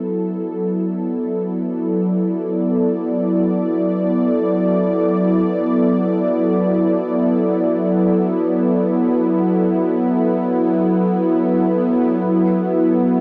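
Floating in free time, this ambient excerpt unfolds with a peaceful, unhurried calm. An analog synth pad carries the whole 13.2 seconds, holding sustained chords between F#3 and D5 with a smooth, detuned sawtooth tone, a soft attack and a chorus shimmer that sits up front in the mix. A filter sweep moves through the pad up to 12.2 seconds, while the harmony rests on Dsus2 before settling onto A5. At that point a felt-muted upright piano enters very quietly with arpeggios on F#4, its intimate, muffled tone carrying audible action noise. A huge, wet reverb with an 8.3-second decay wraps the sound in a dark, warm production.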